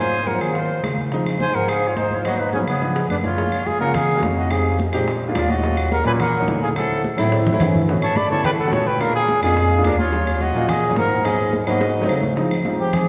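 Awash in the lingering reverb of a church, this sunny, sophisticated excerpt of fast Afro-Cuban jazz sets a breathy, whispered trumpet melody up front, with vibrato and scooped notes, over a crisp, chiffy metal flute line, dark baby grand piano chords with audible action noise, a mellow, distant bass clarinet carrying the bass, and soft-handed congas, tight bongos and woody claves tucked in the background, with drum fills at 2.8, 7.3 and 11.8 seconds.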